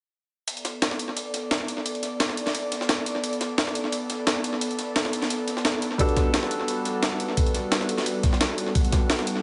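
An airy, breathy pad sits up front in this soulful, dreamy liquid drum and bass, holding sustained chords with chorus and sidechain pumping as the harmony moves from Bm7 to Gmaj9 at 6.0 s. Two sampler-style kits with tape echo carry the groove: a gritty breakbeat kit with hi-hat and a high-tuned snare up front, and a tape-warm jungle kit in the background whose ride and snare are high-pass filtered. At 6.0 s a felt-muted upright piano enters with mellow accompaniment and audible action noise, joined by a thumpy, compressed electronic kick, in an echo-heavy mix with light reverb.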